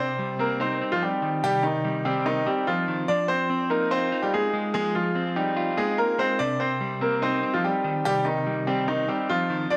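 A bright, polished grand piano carries the melody from the first moment over a clean, fingered electric guitar colored by harmonic tremolo, both up front in a lush hall reverb, in this tense, dark half-time hip hop excerpt at 145 BPM in C minor that moves from Cm to Fm7 at 3.1 s and back to Cm at 6.4 s.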